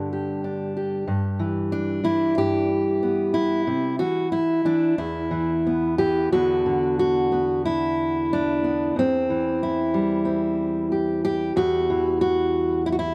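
Folk for a single fingerpicked steel-string acoustic guitar in E minor, haunting and wistful, drifting in a rubato 4/4 around 92 BPM with warm fresh-string tone, audible finger squeak and an up-front presence in a moderate studio reverb, moving from G through C to Bm/E by 6.3 seconds before settling on Em at 11.5 seconds in this short cut from a longer piece.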